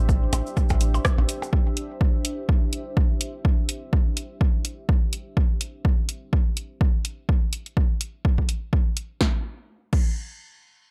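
An overdriven, punchy electronic kick drum sits up front in this clinical, hypnotic minimal techno excerpt, joined by an analog drum machine's hi-hat, rim click, snare and crash, while a sidechain-pumped sine sub bass with a pitch-drop attack, a moody, detuned sawtooth pad with chorus and reverb, delayed percussion blips and a grainy cabasa in the background have stopped by 5.4 seconds, leaving the drums alone in a dark, small-room mix.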